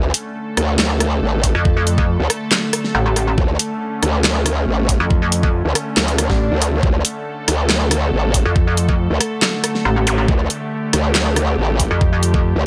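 Dry, this heavy, chaotic wobble dubstep excerpt in D harmonic minor runs at 139 BPM with a half-time feel, driven by an aggressive, formant-filtered growl bass and a saturated, pulsing pluck wobble bass entering at 1.5 s, both up front with chorus and overdrive, alongside a tape-tinged dubstep drum kit of huge snare, bright hi-hats, handclaps and rim clicks, an overdriven, knocking electronic kick drum arriving at 1.4 s, an evolving, detuned wavetable pad that warbles and pumps with sidechain in its own reverb, and very quiet electronic swell and zap effects at 6.2 s and 10.1 s.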